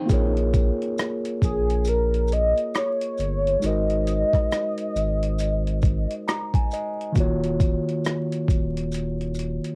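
Reflective and nostalgic, this short lo-fi hip hop excerpt settles into an unhurried swung groove, moving through Bbm7, Ab7 and Ebm9. A mellow tine electric piano carries the accompaniment from the opening, its clean tone colored by cassette tape, and it slips in a brief fill between 5.8 and 7.2 seconds. Underneath, a saturated sub bass sits deep and thick, while a gritty boom bap sampler-style drum kit pushes a thumpy kick, hi-hat and rim click with overdriven, compressed punch. Maracas and woodblock rattle softly in the background. From 1.4 to 6.3 seconds a velvety synth lead, detuned and treated with chorus and vibrato, sings the melody up front. The whole piece sits in a moderate booth ambience with the character of a home cassette recording and a bed of vinyl crackle.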